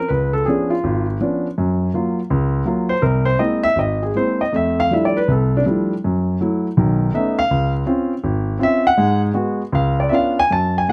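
Swinging at 162 BPM in 4/4 with a loose, rubato feel, this relaxed, sophisticated solo jazz excerpt features a warm, intimate grand piano played up front with audible action noise, ranging from Ab1 to A5 through rich harmony such as Db7b9, Gbmaj7, Caug7 and Fmaj13, captured by close, detailed microphones in light reverb, slightly below standard pitch at A4 = 436 Hz.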